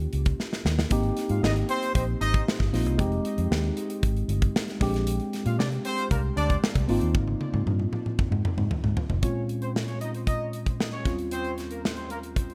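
Urban and upbeat, this polished 1980s jazz-funk pop passage moves at 115 BPM in Ab major, with a tight, airy, up-front studio drum kit under gated reverb, driven by a medium-tuned snare and marked by fills around 0.4 and 7.1 seconds. A dark, round, foam-muted fingered electric bass punches along until 9.2 seconds, while a worn, slightly out-of-tune tine electric piano with subtle chorus carries the lush extended chords. From 1.3 seconds a horn section with light vibrato and a smooth top adds a second line through tape echo, all set in a studio ambience.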